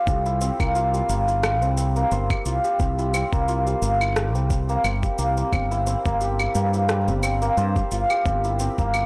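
Shimmering, ringing hammered santur arpeggios open this peaceful organic downtempo excerpt at 88 BPM in C mixolydian, softened by a low-pass filter and delay over a C7sus4 chord, joined at 0.1 seconds by a dark, round fretless bass with tube saturation and sidechain pumping, a gritty, thumpy overdriven electronic kick, and layered overdriven shaker, claves and rim click with a lightly swung sixteenth-note feel, all within a blown-out, overdriven mix touched by light reverb.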